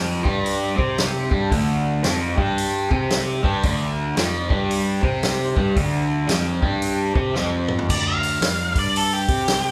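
Brooding and smoky, this short cut of blues rock with a southern rock edge swings at 113 BPM in D minor, with a crunchy, double-tracked overdriven guitar riff through a phaser cycling G5, C5 and Dm over fuzzy, overdriven picked bass and a vintage acoustic kit with a punchy kick and rolled-off top. After a drum fill at 7.4 seconds, a dark octave-fuzz lead guitar takes a distorted solo from 7.9 seconds as the riff guitar stops, moving over Dm and Gsus2. The trio sounds like a band playing live in one room, wrapped in a moderate large studio reverb.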